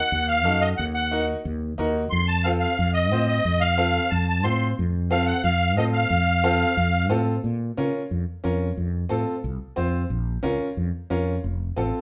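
A reedy, shimmering musette accordion opens this fiery, passionate latin excerpt at a brisk 180 BPM, carrying the melody in a straight 4/4 until 7.1 seconds, while a round, punchy fretless electric bass with a dark, amped tone and a brilliant, woody upright piano with a vintage character join almost at once. The harmony moves from Ebm to F and then alternates between Bbm and F in the second section from 7.4 seconds, where bass and piano carry on together to the cut. All three parts sit up front, played live in one room with a wet studio reverb.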